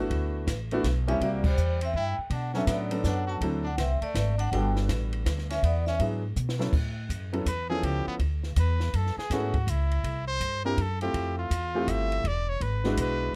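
Small-group swing and bop jazz in a brisk 3/4 at 163 BPM, this swinging, sophisticated excerpt is cut from a longer piece and tuned slightly sharp to A4 = 443 Hz. A baby grand piano sits up front with a natural tone, comping through rich harmony that opens on D69 and moves through chords such as C7#11, Gmaj9 and F#m11, while a woody, thumpy upright bass with steel strings anchors the low end. A compact cocktail drum kit with dark cymbals, a high-tuned snare and a punchy kick keeps time, and the band hits an accent at 1.4 seconds. From 1.1 seconds a vibraphone with medium hard mallets carries the melody with a metallic ring and fast motor vibrato until 5.9 seconds, as a brilliant, forceful trumpet with scooped notes and light vibrato adds a second line. After a drum fill, the trumpet takes a solo from 6.7 seconds to the end, heard through close, detailed microphones with little reverb.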